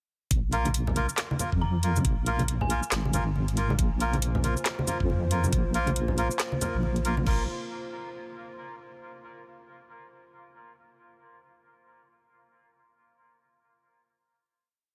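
Deep dubstep at 138 BPM with a meditative, brooding half-time swing, built on a wobbling, up-front sawtooth-and-sine bass holding long notes under a knocking kick and crash, a half-time beat of woody snare, metallic hats, shaker and claps, soft-handed echoing congas, off-beat melodica chords with a reedy, breathy dub echo, an eerie inharmonic FM bell offering short answering phrases in the background from 1.6 to 3.2 seconds, and a moody square-and-sawtooth pad of sustained chords arriving at 3.8 seconds before the piece settles on a final chord at 7.3 seconds.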